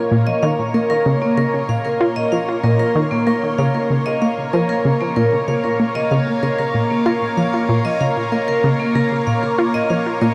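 A straight 4/4 pulse at 95 BPM drives this cosmic, expansive stretch of sequencer-driven ambient space music in Bb minor, cut from a longer piece and resting on a single Bbm chord throughout. Up front, a round, detuned analog pluck with chorus and delay plays a riff, while a metallic, ringing vibraphone struck with medium hard mallets spins arpeggios through delay and shimmer reverb, and a lush, thick unison pad with chorus, phaser and shimmer reverb holds sustained chords. Deep in the background, a resonant, bubbling stepped-filter texture fades in across the 10.3 seconds, all of it set in a huge, wet ambient reverb.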